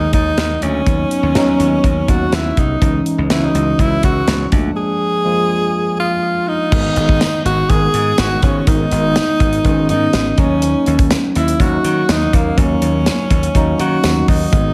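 Urgent and dramatic, this 1980s-style pop passage in G# minor drives along at 123 BPM, with a clear tenor saxophone singing the melody with light vibrato through a diffuse ambient delay over tine electric piano chords bathed in lush chorus, a bright, direct slap bass, and a mid-forward acoustic drum kit of punchy kick, medium-tuned snare, hi-hat, crash and tambourine with a rolled-off top, inside a dreamy mix soaked in plate reverb.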